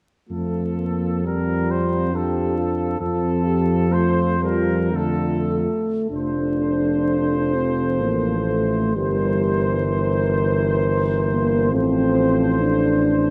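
A moderate concert hall reverb and a layer of vinyl crackle surround this short cut from a longer classical, hymn-like piece for brass band in F major, moving at a rubato 46-69 BPM in 3/4 with a warm, tender mood. A tight trumpet section with soft attack and a smooth top carries the melody, while a French horn section sits in the background on a second line, a clear trombone and a mellow euphonium supply accompaniment, and an up-front tuba anchors the bass, all shaded with light vibrato. Every part plays from 0.3 s to about 13.3 s, with the harmony resting on F before shifting to C7/G at 9.0 s and settling on F/A at 11.7 s.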